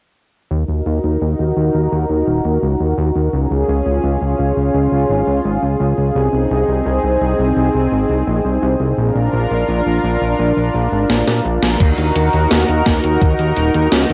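Synthwave excerpt with a nostalgic, nocturnal mood, in which a lush, detuned unison pad with chorus and plate reverb sustains chords over a fat, saturated sawtooth bass, both pumping and filter-swept through an Ebm, Db, Ab/C, Bb progression, until a gated 80s drum machine with cassette-tinged gated reverb on the snare fills at 11.1 seconds and a thumpy electronic kick joins at 11.8 seconds inside a small booth's homespun cassette sound.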